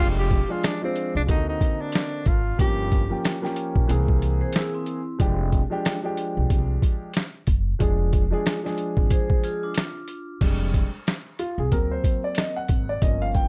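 A swung 92 BPM 4/4 jazz-hop groove in F dorian sets a smoky, cool mood, with a gritty, pitched-down boom bap kit up front joining at 0.3 s alongside a woody pizzicato upright bass and a dark, mellow grand piano with audible action noise, while a breathy tenor saxophone with plate reverb and analog delay offers a brief subtoned melody until 3.2 s, a bright hard-mallet vibraphone rings in short second-line phrases, and the piano takes a solo from 10.4 s to the cut-off at 13.5 s.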